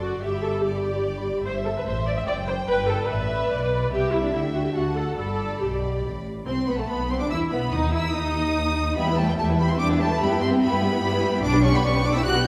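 Heard from further back in a recital hall, with a wet reverb that rings for about 1.2 seconds, this excerpt from a longer piece is a quick classical-period movement for string orchestra at 146 BPM in 3/4. The mood is spirited and cheerful, and the music sits in G major before turning to E minor at 6.5 seconds. The first violins carry the melody high above the ensemble with light vibrato and a smooth, polished tone. Beneath them, the second violins add a lush, expressive line with a soft attack. The viola section supplies accompaniment that sits up front with an even, studio-close presence, and the cellos share the bass with the double basses. The basses sound full and forward, their vibrato lending a rich depth beneath the bowed ensemble.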